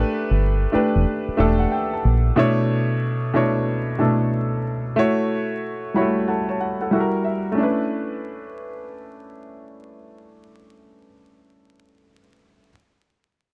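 Late-night and introspective, this R&B fragment, cut from a longer piece, moves with a swung sixteenth-note feel over lush extended chords. A clear, worn concert grand piano carries the accompaniment throughout, its short sustain and deep low end sitting up front, and it adds fills along the way. A dark, round, foam-muted fingered electric bass appears only at the start, dropping out at 2.3 seconds, while the dry, close 1970s-style recording is dusted with vinyl crackle.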